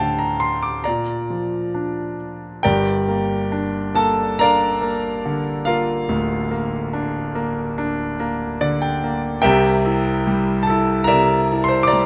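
Warm and tender, this short excerpt of lyrical classical solo piano drifts with rubato at around 66-73 BPM in G dorian, moving through chords such as D5, Bb, Gm7 and C9. The grand piano sounds clear and intimate, placed up front with audible action noise, ranging from D1 to D6 under light reverb and close, detailed miking. After a brief opening passage, a new section begins at 2.6 seconds, and the piano adds a fill from 8.2 to 9.4 seconds.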